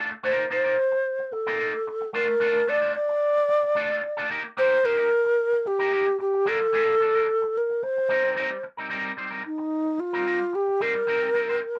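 Disco groove at 111 BPM in C dorian with a danceable, sultry mood, cut from a longer piece and carrying the soft grain of a home cassette recording in a booth with moderate ambience. An electric guitar through an envelope filter plays bright, twangy accompaniment from the start, while a breathy wooden-headed alto flute enters at 0.2 s with the melody, its vibrato and crisp attack sitting up front over chords moving from F7sus4 to Bbmaj7 and Cm7. A new section begins at 8.9 s and runs to the end at 11.8 s.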